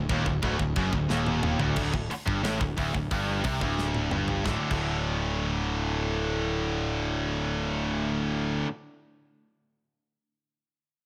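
Aggressive and relentless, this heavy metal excerpt charges along at 178 BPM in a straight 4/4, built on D chords that settle into a D5 power chord at 1.8 seconds. An up-front, high-gain guitar with distortion drives the riff alongside a scooped, distorted companion, while a double-tracked, overdriven semi-hollow guitar sits in the background for just the opening 1.8 seconds, and an overdriven picked bass rumbles low and direct underneath. A tight metal drum kit with a tight kick, medium-tuned snare, toms, hi-hat and crash and china cymbals pounds through until 4.8 seconds, punching in fills at 1.1 and 3.8 seconds, all set in a studio reverb.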